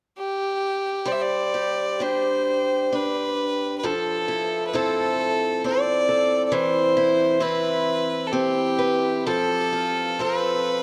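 Celtic folk slow air in a tender, pastoral mood, unfolding in a free, rubato three-time from a short cut of a longer piece. A single bowed fiddle carries the melody from 0.2 s, clear and biting with light vibrato and a smooth top, sitting up front, and a picked acoustic archtop guitar joins at 1.1 s with a warm, boxy accompaniment through chords such as Gsus4, Fmaj7 and Cmaj7/E. The dark production places both players close within a moderate cathedral reverb that lingers long after each phrase.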